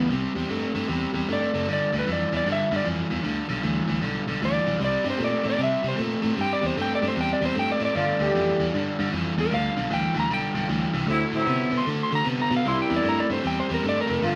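Vinyl crackle and a moderate studio reverb frame this soulful, gritty blues excerpt in G mixolydian, swinging at 153 BPM in 4/4 as a dark, slightly broken-up electric slide guitar solos over a bright, biting overdriven guitar riff played up front. A round, foam-muted fingered electric bass holds the low end, and a distant, roomy horn section with light vibrato and a soft attack adds jazz-style stabs from 7.9 seconds. The harmony moves through Cadd9, G, C5, G9, D9 and C9.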